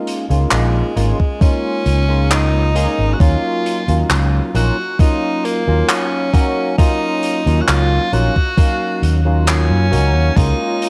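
Vaporwave with a woozy, nostalgic mood, built on a barky tine electric piano with analog chorus and tape echo, airy street-band handclaps and hi-hat under gated reverb, a thumpy sampler-style electronic kick and an up-front fretless electric bass, while an edgy tenor saxophone with light vibrato and tape echo carries the melody over chords moving from Db6 to Ebm7 and back, before a silky string machine with ensemble chorus enters in the background at 10.6 seconds, just as this excerpt is cut from a longer piece.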